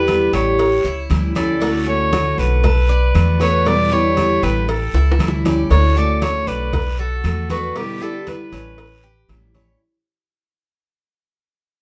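Relaxed and warm, this Cuban son and guajira excerpt puts a vintage, classical-style clarinet up front carrying the melody, beside a woody, thumpy pizzicato upright bass on gut strings. Picked steel-string acoustic guitar accompaniment and the metallic, double-strung arpeggios of a Cuban tres fill out the band, while soft-handed congas and a raspy guiro sit in the background and a tight, high-tuned cowbell and bongos are struck with hard hands. Played live together in one room with moderate studio reverb, the groove moves through a drum fill at 4.9 seconds before fading out from 5.7 seconds.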